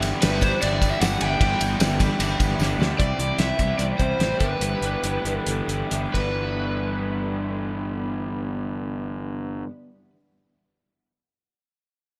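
An indie rock excerpt in G major opens with a jangly, wistful full band, where an overdriven, lo-fi garage guitar riff and a twangy, compressed twelve-string electric guitar with ensemble chorus ride over a punchy fuzz bass and a cloth-damped, thuddy drum kit with gated reverb and a fat snare, while a jingly tambourine sits in the background until 2.8 s, a second overdriven guitar carries the melody, a drum fill leads into a slowing passage at 3.0 s over a Cmaj7 before returning to G6, and the drums drop out at 6.3 s, all set in a lush hall with bright 1980s-style digital production at 127-153 BPM.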